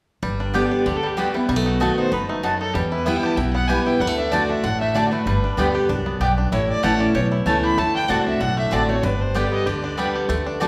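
A reverberant concert-hall sound surrounds this lively, driving bluegrass excerpt in G major at 191 BPM, with a light swing on the eighth notes and a progression moving from G through B7, Em, D, A and D7 back to G. A bright, full-bodied picked acoustic guitar sits up front with audible finger squeak, joined by a twangy, percussive fingerpicked banjo melody and a woody, growly pizzicato upright bass from 0.2 seconds. A mellow double-strung mandolin adds stabs from 0.5 seconds, and a single earthy bowed fiddle with light vibrato and a smooth top carries the melody from 0.9 seconds.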